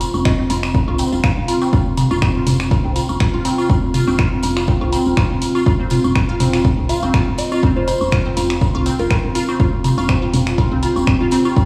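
This cool, hypnotic minimal techno excerpt opens with a deep, moody ambient pad whose warbling, vintage tone carries chorus and built-in reverb, over a round, woody FM bass with a fast, decaying attack. With them come an analog drum machine's finger snaps and hi-hat, overdriven electronic woodblock and toms trailing dub echo, and a jingly tambourine sitting close and dry. At 0.3 seconds a punchy, tape-warm electronic kick arrives up front, joined by a squelchy, resonant blip pluck riff that is bright and juicy, coloured by phaser and dub echo. The bass, pad and pluck all pump against the kick, while a pure, mellow FM bell surfaces briefly at the start and returns from 6.9 to 9.2 seconds with chorus and echo. The groove swings lightly on one F5 chord, and the drum machine, woodblock and toms sound re-recorded in a small room, set in a bare stone space as if played through a big sound system.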